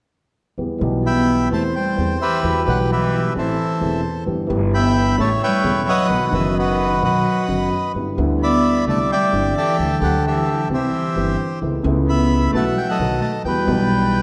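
A melancholic, dramatic tango fragment opens at 0.6 s with a warm concert grand piano laying down deep-bass accompaniment over a woody, thumpy pizzicato upright bass on gut strings. At 1.1 s a reedy, up-front bandoneon takes the melody while a single bowed cello adds an expressive second line with vibrato, soft attack and portamento. The rubato feel and a wet concert hall reverb lend the passage a brooding, theatrical sweep as its chords move from E minor colours toward a B7 that resolves back to Emadd9.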